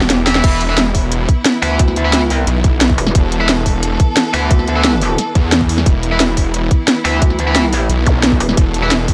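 Dark and aggressive, this excerpt of technical drum and bass runs at 177 BPM, opening with a drum fill from the kit before the electronic kick drops in at 0.4 seconds to launch the drop, where a tight, up-front kick and cracking snare, hi-hat and crash drive a thick, detuned saw bass with chorus, tube saturation and sidechain pumping. From 1.6 seconds a metallic wobble bass joins, distorted and bright, while overdriven electric guitar stabs with dub echo cut through and a clear symphonic string section holds smooth, bowed chords in the background, roughened by vintage 12-bit sampler grit and pumping. A very quiet electronic zap flickers at 8.1 seconds, all set in a dry mix.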